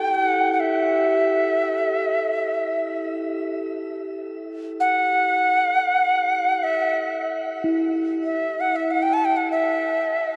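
Awash in a huge ambient reverb, this dark, haunting, free-time meditative world excerpt in E minor, tuned to A4 = 435 Hz, places an airy, woody Native American-style cedar flute up front, carrying the melody with a soft attack and vibrato, bathed in shimmer reverb and diffuse ambient delay, over a ringing bronze singing bowl played with a felt mallet whose mellow, metallic tone beats slowly within its own shimmer reverb for the full 10.4 seconds.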